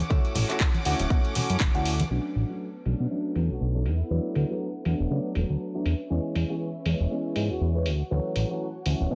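Nostalgic and funky, this filtered disco house excerpt pumps with sidechain compression as a fat, saturated analog bass sits up front beside a dark, worn grand piano coloured by phaser, its action noise audible, over a smooth bowed chamber violin section. A punchy electronic kick and background tambourine and congas are gone by 2.1 s, when a filter sweep takes hold while the electronic house kit's hats, claps and crash carry on with studio reverb. From 3.5 s a light-vibrato horn section in the background adds a short melody treated with digital delay.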